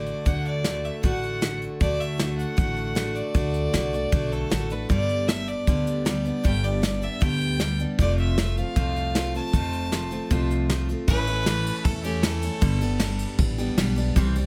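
Honky-tonk and classic country in a sunny, down-home mood, this brief cut from a longer piece moves at a brisk, straight four-beat stride. A clear, earthy fiddle with light vibrato sits distant in the mix, taking a bowed solo over the first 11.1 seconds before dropping out at 13.3 seconds, while a bright, full-bodied picked acoustic guitar and a woody, thumpy pizzicato upright bass carry the accompaniment. Up front, a soft brush kit in a small room adds punchy kick, snare, hi-hat, ride and crash, all under light reverb as the chords shift from D through G and F to A and back to G.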